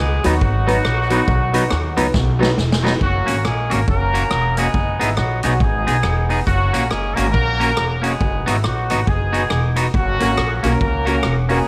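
A clear, vintage horn section carries the melody from the first moment with light vibrato and octave doubling, over a woody, growly pizzicato upright bass, both sitting up front in this bouncy, cheerful ska at 138 BPM with a swung feel in F# mixolydian. A twangy, slightly broken-up electric guitar and a big-band drum kit with a punchy kick and rim click enter at 0.2 seconds, joined by boxy upright piano stabs that drop out after a drum fill ending at 3.0 seconds and return at 10.2 seconds. The chords move from E through G#m/F#, F# and B/F# back to F#, all heard in a small room ambience in this cut from a longer piece.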